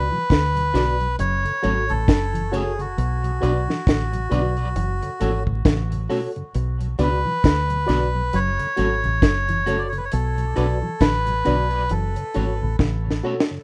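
A breathy, nasal melodica lead with dub echo rides over a round, foam-muted fingered bass in this hypnotic, meditative roots reggae excerpt in B dorian at 67 BPM, which sways between Bm and F#m as a slightly broken-up guitar with tremolo and dub echo, a worn, slightly out-of-tune reed electric piano stabbing through fast tremolo, a flute-like tonewheel organ on slow rotary speaker and a clean fingered guitar playing arpeggios sit back behind an up-front, dry drum kit with a high-tuned snare and tight kick, which closes on a fill at 12.8 seconds, all in a rough home demo mix with light reverb, vinyl crackle and a dulled top end.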